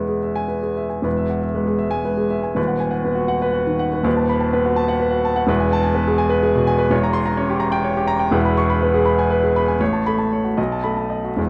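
An upright piano opens alone in E major, its woody, intimate tone sitting up front with the clatter of its action audible beneath the notes. This is a romantic classical character piece for solo piano, cut from a longer work, with a hopeful, lyrical mood. It moves in 6/8 at roughly 72-87 BPM counted in dotted quarters, and the rubato lets the pulse breathe freely. The harmony travels from E through B/D# and B7/D# before returning home. An Edim7 at 6.9 s adds a brief shadow before F#m/A leads to a closing B7 at 10.6 s. Long sustain blooms into a moderate stone-room reverb, and the dark, polished production gives the instrument a close, present feel.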